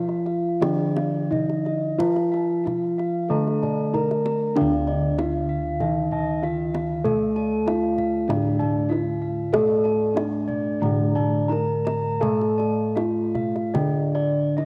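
A mellow, soft bronze metallophone carries the melody, struck with padded disc mallets and heard close and dry, its full ringing tone tinted by a cassette-tape character. This is a stately, shimmering stretch of Javanese gamelan in D pelog, cut from a longer piece and moving in 4/4 with a straight feel at 71 to 97 BPM. Beneath it, a second metallophone plays the accompaniment with a wooden mallet, its sound warm and boxy as if in a small room, while another wooden-mallet metallophone spins arpeggios high above. Bossed gongs also play arpeggios in that upper register and anchor the bass below, their round, beating bronze tone sitting mid-forward. The kendang enters at 0.1 seconds with tight, close, dry strokes from soft hands. A lush hall reverb surrounds the ensemble, and the music moves into a new section at 4.6 seconds that continues to the end at 14.7 seconds.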